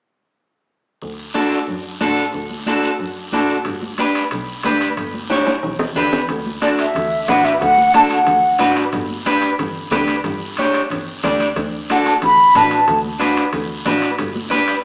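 A breathy, hollow concert flute takes the melody from 6.6 seconds in this sunny, danceable cumbia, over a dark, slightly broken-up electric guitar with spring reverb up front, a rich bowed double bass, raspy guiro, bright high-tuned congas and ringing metal-shell timbales, with a drum fill just before the flute's entry, all heard in a reverberant room through a small speaker.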